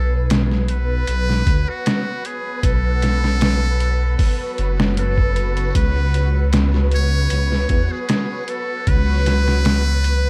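A buzzy, metal-muted trumpet carries a jazz-style melody with light vibrato over a melancholic, cinematic trip hop groove at 77 BPM, backed by a compressed, pitched-down sampler drum kit with a thumpy kick, a deep, rumbling detuned saw bass, mellow string-machine cellos thickened by phaser, ensemble chorus and 12-bit grit, and a dreamy reversed texture in the background, all under vinyl crackle as the chords move from B5 to C#7(no3) at 5.8 seconds in this fragment of a longer piece.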